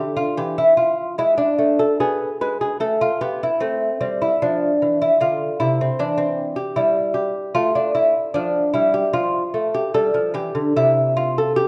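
Serene and radiant, this short fragment of a longer piece is a baroque-style classical dance in a rubato triple metre, played by a solo lute that sits up front from 0.0 to 11.7 seconds. The fingerpicked gut double strings, some doubled at the octave, sound delicate and acoustic, moving through colors like G#dim, F, Em7, Fmaj13 and G5. A dark production and a wet recital-hall reverb give the lute a soft, glowing halo.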